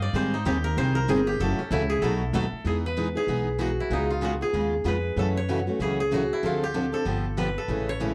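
Acoustic string swing in the jazz manouche style at a brisk 191 BPM, this charming, swinging fragment of a longer piece opens with a bright, dry koto solo played with fingerpicks that runs through the first 2.6 seconds, set up front beside a dark, thumpy gut-string upright bass with tube saturation, while two picked steel-string acoustic guitars comp through chords moving from G#maj7 to Emaj7 and on to G9, one with audible finger squeak and the other a full-bodied dreadnought sitting in the background, all heard through a moderate club reverb and the warbly pitch drift of worn old cassette tape.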